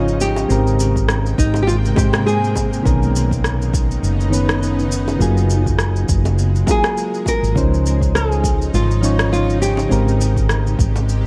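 Relaxed and sunny, this sunset chillout excerpt drifts along in a swung 4/4, built on lush major-seventh-and-ninth colours that move from Abmaj9 through Cbmaj9 and Gbmaj9 to Dbmaj9 before returning. A woody fretless electric bass sits up front with a round, hollow, amped tone bathed in lush chorus. Soft electric-piano-like synth keys, mellow and gently warbling with a vintage character, carry the accompaniment through chorus and digital delay. Behind them a shimmering, ethereal pad holds sustained chords with an octave-up sheen, detuned and granular, softened by chorus and its own reverb. A fingerpicked nylon-string guitar with old strings offers a brief classical melody at the start and again from 6.7 to 10.2 seconds, trailed by delay. The groove comes from a deep, tape-warm electronic kick drum entering at 1.0 seconds, a layered electronic shaker and rim click, and tight, high-tuned bongos tucked in the background, all set in a dark production with light reverb and digital ambience.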